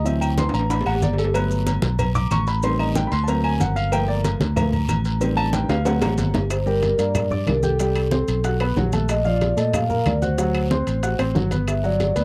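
A polished, up-front upright piano solos over a punchy, round fingered electric bass from 0.0 s in this driving, sultry Afro-Cuban jazz passage at 186 BPM in G minor, joined by saturated, ringing agogo bells and timbales and, in the background, bright congas, woody claves, raspy guiro and grainy maracas, with vintage cowbell and bongos arriving at 1.3 s and a metallic vibraphone taking the melody at 6.5 s, captured in a dry, close 1970s-style studio sound.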